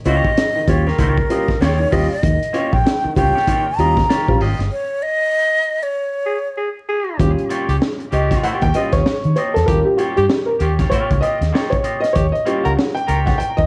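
A gritty, playful funk groove opens with vinyl crackle and a light reverb, cut from a longer piece and moving at 97 BPM in 4/4 with a 60% swing on the sixteenths in Eb mixolydian. Up front, a crunchy, saturated breakbeat kit with a punchy kick, a high-tuned snare and hi-hat sits beside a round, foam-muted fingered electric bass that sounds dark and amped. A clean, twangy electric guitar with spring reverb plays accompaniment under woody upright piano stabs over an Eb9 chord, while a breathy jazz flute carries the melody with vibrato and a soft attack until 6.6 seconds. At 4.7 seconds the harmony drops out for a break and band accent, and from 7.2 seconds the Eb9 returns as the upright piano takes a solo. A raspy tenor saxophone with tape echo adds a second line from 6.3 to 13.2 seconds.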